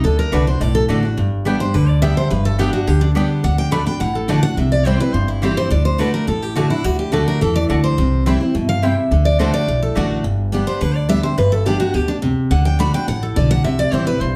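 Lively and joyful, this short bluegrass excerpt races along at 212 BPM in a straight 4/4, cut from a longer piece. A bright, picked steel-string acoustic guitar carries the melody up front, its full-bodied tone set in a plate reverb. A second steel-string guitar, a jumbo, picks the accompaniment beneath it. A woody, thumpy upright bass plucks the low line. A mandolin with doubled strings adds quieter stabs from 0.3 to 10.1 seconds. The chords move mostly among D, G and C, and the whole group sounds as if heard from a little way back in a reverberant studio room.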